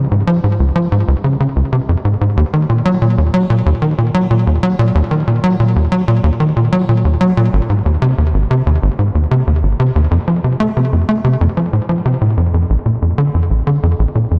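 A moderate plate reverb and an echo-heavy mix surround this luminous, cosmic ambient excerpt at 93 BPM in a straight 4/4, where a tight sequencer bass plays alone from 0.0 to 14.4 s, its punchy, nasal sawtooth-and-square tone with a fast-attack filter pluck sitting up front, spreading through lush chorus and delay across a range from Ab1 to A3 before the music shifts into a new section at 12.7 s.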